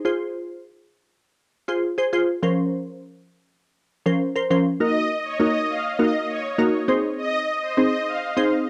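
The sound is that of a home cassette recording, with a slightly worn tape quality and a short, wet booth ambience that keeps the room close. This energetic, confident pop fragment, cut from a longer piece, opens with a glassy wavetable pluck playing the accompaniment from the very start. Its crystalline, nasal tone is detuned and full-bodied, with a fast attack, a noise layer, a filter sweep and chorus, all set up front and washed in plate reverb. The first part works as a build-up that gives way to a drop at 4.8 seconds, where a supersaw pad enters to carry the melody in a higher register. The pad is lush and sawtooth-rich, with a soft attack, long sustain and release, and an analog delay trailing its plate reverb, and it sits up front beside the pluck until the clip ends at 8.7 seconds.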